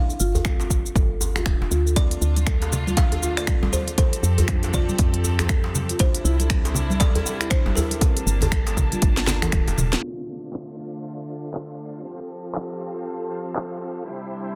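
Afro house at 119 BPM in D minor, hypnotic and driving, with a 16th-note swing and a tuning pitched slightly high, cut from a longer piece. A deep, overdriven electronic kick sits up front with a large-room character, joined by an afro-pop kit of sharp snare, smooth hats, cabasa, finger snaps, handclaps and toms, all softened by low-pass filtering, while a tight, cracking djembe with metal rattles and bright, close congas fill out the percussion. A round, dark FM bass with a woody attack pumps against the kick beneath a mellow rosewood marimba playing arpeggios and a buzzing, hollow kalimba carrying the melody, both trailed by tape echo. The harmony moves through Gsus2, Dm7, F, C and Gmadd9, and from 2.0 seconds a rich, bowed string section adds smooth sustained chords. After a drum fill and a band accent near 9.9 seconds, much of the groove drops away and a bright, shouting tonewheel organ enters with stabs through a slow rotary speaker and chorus vibrato, as a filter sweep runs to the end. 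The mix is dry, dense and heavily limited.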